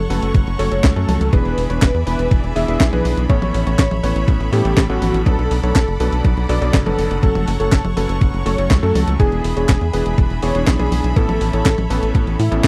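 From the first instant, a thick, bold unison lead of detuned sawtooth and triangle with a sub octave carries the melody between E4 and E5, its sustained tone touched with tape echo, while a bright, intense studio string section bows vibrato-laden chords up to C#6 and a tight, punchy sequencer bass drives underneath with plucky, decaying sawtooth and square-wave notes. This nostalgic, melodramatic italo disco excerpt moves at 122 BPM in a straight 4/4. A clear electric grand piano with a clangy low end and chorused unisons adds stabs from 0.1 seconds, joined at the same moment by a clean 12-bit drum machine playing handclaps, hi-hat, a medium-tuned snare and toms. A thumpy, sampler-style electronic kick arrives at 0.3 seconds and sits loudest in the mix, with the drums carrying a tape-softened, small-room character. The harmony cycles through F#m, E7, Aadd9 and Bm7 before returning to F#m, E7 and Aadd9, all in a dry, close recording with a 1970s studio feel.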